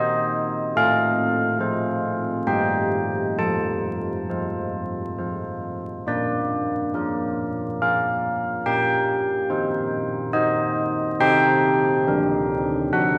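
Festive yet serene, this short classical tune for church bells moves at an unhurried 70 BPM in a straight 3/4 lilt, tuned to A4 = 442 Hz. A solo carillon carries the whole passage from 0.0 to 13.2 s, spanning D3 to A5 with a bronze, ringing tone whose minor-third overtone gives each strike its distinctive color. The padded clapper lends the bells a mellow, soft attack, and they sit up front in the mix. The harmony opens on C minor and passes through F over A, E-flat over G, F and B-flat, then moves through Cm7 over B-flat and Am7b5 over C before arriving on G minor over D at 12.1 s. A long cathedral reverb of 4.5 seconds surrounds the bells, a vinyl crackle runs beneath, and the piece is cut from a longer work.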